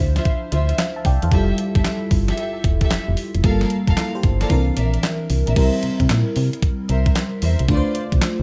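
An FM electric piano with a soft pad layer opens this flirty, upbeat new jack swing fragment, its lush, dreamy, detuned tone treated with chorus and phaser, while a solid FM bass sits beneath it with a punchy, round, dark sound. At 0.2 s a crisp 8-bit drum machine arrives up front, its thumpy kick, medium-tuned snare, hi-hat, handclaps and crash cymbal pushed through overdrive for a sampler-style grit, all riding a swung sixteenth-note feel. A chamber string section adds soft, bowed stabs played sul tasto with light vibrato, intimate and smooth on top, and carried by a digital delay. The harmony moves through Dm9, Fmaj9, Gm9 and C9 before a new passage at 5.6 s settles on C7 and then Dm7. The production is dark and warm with a light reverb, keeping the strings tucked in quietly behind the drums and bass.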